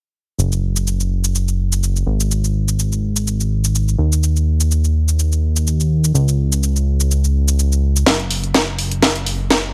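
A fat, detuned sawtooth bass sits up front from 0.4 s, its thick, evolving tone shaped by a filter pluck with a fast attack and sustained notes that pump against a sidechain, moving between F#1 and D#2. This joyful, uplifting piano house groove runs at 125 BPM in 4/4, with a 54% swing on the 16ths and tuning set to A4 = 438 Hz. A layered, produced house drum kit shares the front of the mix, pairing a cracking snare with warm hi-hats and a shaker. At 8.1 s the track shifts into a build-up with a drum fill, and an electronic kick drum joins in the background, its punchy hit thinned by a high-pass filter. Digital ambience surrounds the whole passage, which is cut from a longer piece.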